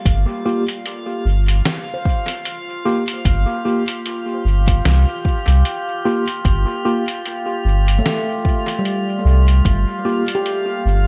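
Deep and hazy, this ambient dub excerpt in G minor sways at 75 BPM with a swung 4/4 feel, as a round, up-front sub bass and a tape-warm electronic kick anchor muffled, pitched-down sampler drums with dub echo on hi-hat and snare, while a bright, ringing handpan plays arpeggios through tape echo, a clean tine electric piano adds tremolo stabs from 0.5 seconds, and a glassy, chorused texture of drifting overtones hovers above in a light reverb.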